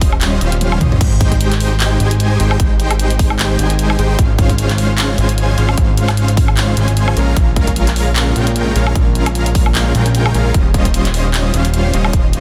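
A swung, half-time groove in 4/4 drives this bright, euphoric future bass excerpt, with a punchy, overdriven electronic kick sitting loudest in the mix and a layered dubstep kit of crash, handclaps, hi-hat, toms and woodblock that breaks into a quick fill at 0.6 seconds. A fat, detuned sawtooth bass with a filter sweep pumps through sidechain compression, while a huge, unison supersaw carries the riff, colored by cassette tape grit, delay, vibrato and the same pumping. The chords move from Eb13 through Abmaj7, Dbmaj7/Ab and Bbm7 before returning to Eb13, all in a dry, dense, heavily limited modern master.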